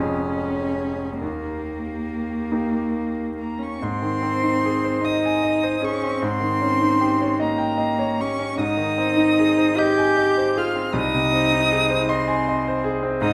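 From the first moment a dark, woody violin sings the melody with vibrato and a smooth top, a soft-attacked, intimate cello plays a second line sul tasto with an airy bow, and a brilliant concert grand piano gives polished accompaniment with deep bass and long sustain, together forming a serene, lyrical slow romantic movement for piano trio in Ab major, in 6/8 at 45-54 BPM in dotted quarters with free rubato, heard as a fragment of a longer piece in a reverberant recital hall.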